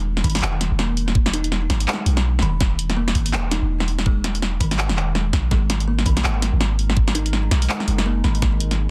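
A half-time drum and bass groove at 165 BPM with a swung 16th feel drives this heavy, tense excerpt, built on a knocking electronic kick and a kit of cracking snare with soft clipping, bright hats and handclaps, all given a small-room character. A deep, mellow 808-style bass sits up front with long sine tones as the harmony shifts from E to G#5 at 5.5 seconds, while a woody, hollow kalimba plays arpeggios roughened by vintage 12-bit sampler grit and trailed by digital delay. At 6.5 seconds a moody, detuned sawtooth pad slips into the background, carrying sustained chords with chorus, built-in reverb and sidechain pumping, all inside a dense, heavily limited master with light digital ambience.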